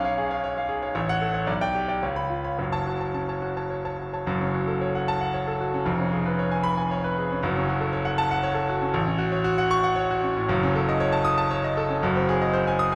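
A clear, intimate concert grand piano plays alone throughout this passionate, stormy fragment of a virtuoso classical piano study in F# minor, moving in a rubato 3/4 at 116 BPM with deep bass, audible action noise and a polished, present tone, while a wet recital hall reverb places the listener further back in the room and the harmony shifts from C#7 over B toward G#7 over F# by 12.0 seconds.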